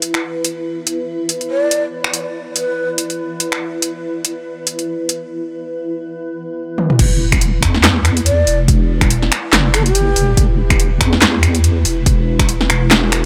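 Brooding and dark, this deep dubstep excerpt moves with a swung, half-time 4/4 feel. A blurred, evolving granular cloud pad holds sustained chords throughout, mellow and full-bodied in its own built-in reverb. An overdriven deep house drum kit sits up front from the start, with a punchy snare, metallic hats, finger snaps, handclaps, toms and crash cymbal, all sounding re-recorded in a large room. A breathy, end-blown ney carries the melody in two short phrases, its vibrato and soft attack roughened by vintage 12-bit sampler grit and trailed by dub echo. After a drum fill at 6.8 seconds, the drop lands at 7.0 seconds, bringing in an overdriven electronic kick and a deep, saturated wobble bass with chorus that rolls up front until the close. Light digital ambience frames the whole mix.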